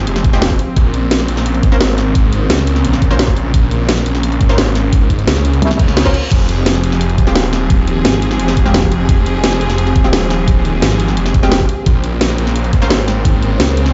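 Dark technical drum and bass at 173 BPM, cut from a longer piece, where a snarling, distorted saw bass growls up front beneath rich bowed symphonic strings pumping against the sidechain, a knocking tape-warm kick and cracking snare with hi-hat and crash drive the mechanical groove, bold orchestra-hit-like synth stabs sit in the background with reverb, delay and cassette tape colouring, and a brief metallic wobble bass at 5.6 seconds leads into a reverse cymbal, all over Fmadd9 and Bbmadd9 chords in a large, reverberant room with a dulled top end.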